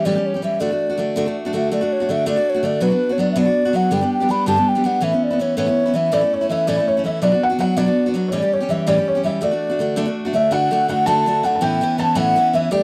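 A dry, close recording in a 1970s studio style, touched with light reverb, carries this lively, rollicking Celtic jig in D major at 109 BPM in 6/8, cut from a longer piece. An airy, hollow baroque flute of wood, with a crisp attack and straight tone, plays the melody over a bright, full-bodied picked steel-string dreadnought guitar sitting up front. At 6.1 s a soft, felt-muted upright piano enters in the background with an intimate second line, its action noise audible.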